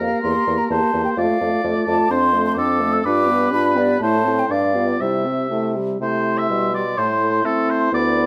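An airy, hollow concert flute with vibrato carries the melody in this cheerful, spirited snippet of a quick classical-period wind quintet movement in C major, moving at 126 BPM in 2/4 with a rubato feel. An oboe with light vibrato sits up front on a roomy second line, while a dark, smooth-topped clarinet stays in the background and a warm French horn fills out the accompaniment above a softly attacked bassoon bass. Close, detailed microphones capture the group in a moderate recital-hall reverb, and a new section begins at 6.0 s.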